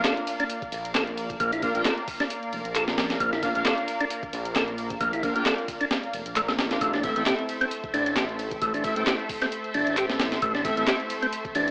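Up front, a compressed, pitched-up sampler-style break kit with a thumpy kick and high-tuned snare drives this raw, funky breakbeat excerpt. Around it sit an analog drum machine's handclaps, hi-hat and ride, set back in a large room, and a round, percussive tonewheel organ riff through a fast rotary speaker and tape echo. Veiled, con sordino string stabs stop at 10.9 s, while a lush, detuned pad pumps under sidechain with chorus and phaser. A deep, rumbling saw bass enters at 0.7 s, and the harmony shifts from Bb to Am at 6.8 s, all carried by a gritty, AM-radio hardware sound with light reverb.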